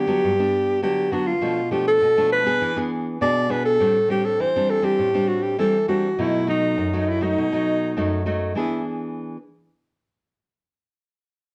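Heard through worn cassette tape with a warbly pitch drift and a moderate studio reverb, this bittersweet yet lively samba excerpt moves at 101 BPM in a straight 4/4, in E minor. A close-miked alto saxophone carries the melody in an intimate jazz style, its tone breathy and whispered, with soft attacks, scooped notes and gentle vibrato. Beneath it, a full-bodied nylon-string guitar is fingerpicked in a deep classical manner, and both parts sit up front. The harmony moves through Gmaj7, Bm7b5, E7, Am7 and B7 before arriving back on E7 as a new section begins at 8.6 seconds. The saxophone stops at 8.8 seconds and the guitar at 9.4 seconds, as the passage is cut from a longer piece.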